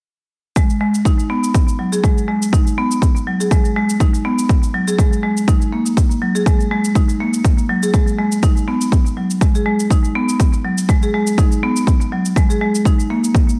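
Driving and spiritual, this afro house passage is cut from a longer piece and rides a lightly swung sixteenth-note feel in 4/4. A marimba played with medium hard mallets carries the arpeggios from 0.6 seconds, its rosewood bars sounding woody and percussive with a boxy small-room character, placed up front and shaped by sidechain pumping, a low-pass filter and analog delay. Beneath it, a layered, punchy electronic kick drum sits prominently in the mix, overdriven and touched with studio reverb, running until 13.5 seconds. A produced electronic shaker, also layered and overdriven with studio reverb, adds a softer presence in the background and carries on to 13.6 seconds. Light reverb and studio ambience frame the whole passage, which holds a single section from start to finish.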